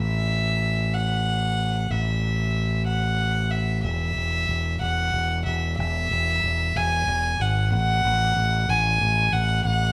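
An airy-bowed, nasal violin carries the melody over a growling, overdriven fingered electric bass at the start of this cinematic, soaring post-rock passage in 6/8, played live by the band in a large studio with moderate reverb, with a build-up beginning at 3.9 seconds and the harmony arriving on F#madd9/A at 7.7 seconds.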